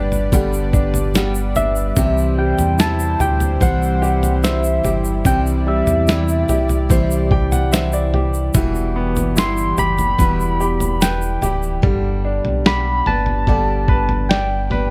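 A lo-fi sampler-style drum kit sets a slow, straight 73 BPM pulse in 4/4, its compressed, pitched-down, tape-warm sound giving the thumpy kick, medium-tuned snare and toms a muffled character, while a grainy, close and dry egg shaker sits low alongside. This tender, emotional pop ballad rests on a deep sub bass with octave, sine and triangle in tone and up front, together with a bright concert grand piano playing brilliant, short-sustained accompaniment and a dark, full-bodied picked steel-string acoustic guitar playing arpeggios. A smooth sawtooth analog pad holds chorused chords in the background, and at 1.6 seconds a round, gentle FM synth lead enters with the melody, colored by chorus, vibrato and tape echo. The piano adds a fill from 6.9 to 8.5 seconds as the harmony moves from G and C to E minor, and the pad and shaker stop at 11.8 seconds when the chords return to G. The recording carries little reverb.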